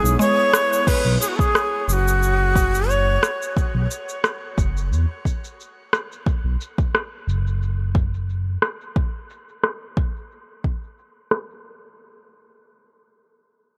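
This short cut from a longer organic downtempo piece opens on a bright, low wooden flute in the Native American style, its crisp, chiffy attack and unsteady vibrato carried on delay and shimmer reverb, over an airy, breathy pad and a smooth synth bass. A produced electronic kit of crash cymbal, rim click and shaker enters at 0.1 seconds, re-recorded in a small room and placed up front, with low-pass filtering on the percussion, snare, cymbals and room sound. The pad sits softly in the background with chorus, sidechain pumping and shimmer reverb, and it drops out at 0.9 seconds as a brief band accent closes. From there a soft, tape-warm electronic kick drum joins the kit. The flute melody ends at 3.6 seconds, leaving the drums and the mellow, sawtooth-and-square bass, which pumps against the kick and moves through a filter sweep until it drops out at 8.6 seconds. A filter sweep also runs across the drums as the lightly swung groove carries on in a mystical, meditative mood under a light reverb.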